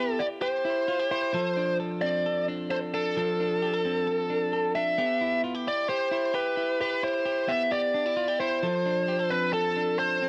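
A homespun cassette recording in a snug, lightly reverberant booth carries this nostalgic, youthful indie pop fragment in a straight 4/4 feel. A bluesy overdriven lead guitar, picked and gritty with distortion and tape color, carries the melody up front for the full 10.3 seconds, while a clean electric guitar, also picked, compressed, warm and close, plays arpeggios beneath it. The harmony shifts between Cmaj7 and Dm7 throughout.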